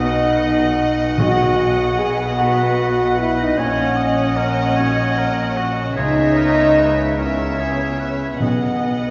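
Hopeful and uplifting, this rubato cinematic film-score cue in B major at 50 BPM in 6/8 sets a floating, sul tasto violin melody above lush string lines, an expressive flute section, a solo oboe with a smooth top, a distant clarinet, a clear, intimate grand piano with audible action noise, woody violas, a prominent dark French horn section holding sustained chords, cellos and double basses on the bass, and hard-mallet timpani at 1.2 and 8.4 seconds, all heard from further back on a wet scoring stage.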